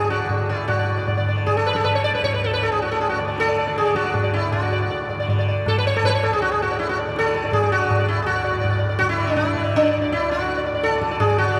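A plucked sitar sits up front and carries the melody, its buzzing tone shimmering with the resonance of its sympathetic strings. Behind it, a softly plucked tanpura holds a bright, low drone in the background for the whole passage. A low-tuned, ringing tabla enters at 0.1 seconds and keeps a straight pulse in five beats to the bar. This serene, meditative stretch of Hindustani classical music is cut from a longer performance and speeds up throughout. The sound is bathed in a cathedral-like reverb with a long 5.6-second decay, giving the impression of a church or concert hall.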